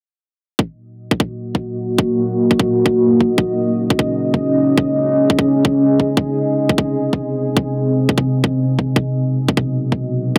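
A dreamy, reverb-soaked mix sets this dark, aggressive fragment of technical drum and bass inside a lush hall with a two-second tail, tuned to A4 = 439 Hz. The tempo is 172 BPM in a straight 4/4, centred on Eb minor. A tight, layered electronic kick sits up front from 0.6 seconds, its tape-warm tone shaped by a high-pass filter. At 1.3 seconds a deep, moody ambient pad arrives, blending detuned sawtooth unison with a sine sub octave, a slow attack and a long release, coloured by chorus, built-in reverb and sidechain pumping. The pad sustains chords that move from Ebm to Dbsus2, then Ab, and finally B, holding between Bb3 and Eb5 as a brooding bed alongside the kick.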